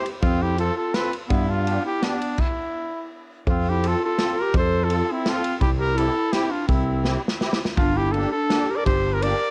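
Alpine folk from an alpine dance band, this bouncy, jolly clip cut from a longer piece moves in a brisk 3/4 at 167 BPM and settles into F major from 3.5 seconds. A warm, classical-style trumpet carries the melody up front, while a mellow clarinet with a smooth top adds a second line, colored by cassette tape and analog delay. In the background, a reedy musette accordion with shimmering wet tuning fills out the accompaniment, close-miked and dry. A bright, growly fingered electric bass sits punchy and direct in front, alongside a natural country drum kit with a punchy kick, medium-tuned snare, crash and ride. After an opening moving from F to G, the band stops from 2.4 to 3.5 seconds, then returns on F through C, with a drum fill at 7.0 seconds leading into G minor. The home cassette recording carries a light studio reverb.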